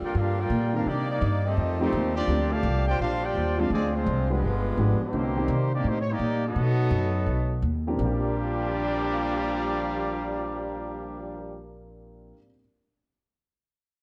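Big band swing cut from a longer piece, energetic and joyful, with a trumpet section carrying the melody up front, its smooth top and light vibrato set over a growly, thumpy pizzicato upright bass that runs to 12.3 seconds. Behind them, a present trombone section plays a second line until 11.6 seconds, a bright saxophone section holds sustained chords only until 5.1 seconds, and an intimate grand piano with audible action noise comps in two stretches, returning at 7.9 seconds. The dark production sits in a wet, large studio room, and the harmony moves through rich extended chords such as Ebmaj13, G7b9 and B7 before settling on Bb69.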